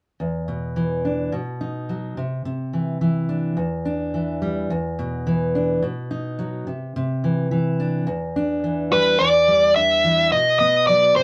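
Rock with a dark, cathartic mood, this short cut from a longer piece opens with a full-bodied, up-front fingerpicked steel-string acoustic guitar rolling arpeggios through E5, B, Cadd9 and Em7, before a smooth, overdriven electric lead guitar enters at 8.9 s with a brooding melody over the Em7 and a closing B5, all captured as a band playing live in one room with moderate studio reverb.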